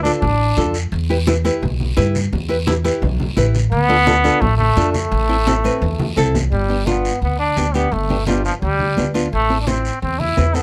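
Cumbia at 172 BPM, danceable and fiery, in which a brilliant, up-front solo trombone with light vibrato and a soft attack carries the vintage pop-style melody, briefly at the start and then again from 3.7 seconds, over fingerpicked nylon-string guitar with old strings, a thumpy, woody pizzicato upright bass on gut strings, raspy guiro and soft-handed, low-tuned congas in the background, all captured with close, detailed microphones and little reverb, with a drum fill at 6.0 seconds leading into the next section.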